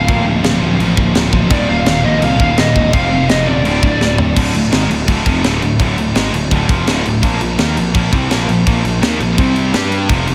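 A dark, distorted lead guitar opens this aggressive heavy metal fragment, playing a short bluesy melody with slapback and tape echo that stops at 4.1 seconds. Beneath it, two bright, high-gain picked guitars and a very quiet, double-tracked fuzz guitar churn through a relentless riff in a straight 4/4, one of the high-gain parts carrying its own slapback echo. A growly, overdriven bass with a bright, fuzzy edge anchors the low end, while an up-front metal kit with a tight kick and high-tuned snare drives the pulse, rolling through a drum fill just before the second section arrives at 4.4 seconds. From there the riffing guitars, bass and drums press on together over a harmony that opens on D minor until the cut-off. The mix has a big arena feel, with a scoring-stage reverb and studio ambience lending the kit its roomy, mid-forward punch.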